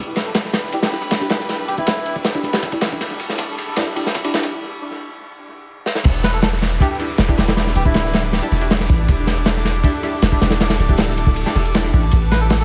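A lush string section holding an Em7 chord with vintage sampler grit opens this dark, nostalgic drum and bass excerpt at 158 BPM, over a deep, up-front 808-style sine bass, as a crunchy, saturated breakbeat kit with dark cymbals and a tight kick arrives alongside a reedy, breathy melodica and a very quiet, tape-dusted soul kit of hi-hat and snare. Glassy harmonics drift high in the background while a muted sawtooth dub stab with analog delay adds filter-plucked chords, and filter sweeps on the stab and melodica drive the build-up through a drum fill and a short break. The drop lands at 6.0 s with a faint electronic downlifter and the melodica returning, all set in a small, echo-heavy room flecked with vinyl crackle before the chords shift to A7sus2 near the end.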